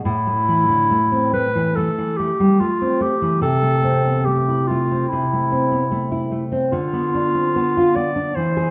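A dark, woody nylon-string guitar opens this brief, melancholic fragment of a romantic duo, its full-bodied, thumb-plucked accompaniment on old strings moving from A minor to A minor over C and then to B diminished over D. A warm, classical-style clarinet enters at 0.1 seconds with an elegiac solo melody in a rubato feel, and both instruments sit up front in a moderate recital hall reverb. Lossy compression artefacts colour the sound of this passage, which is cut from a longer piece.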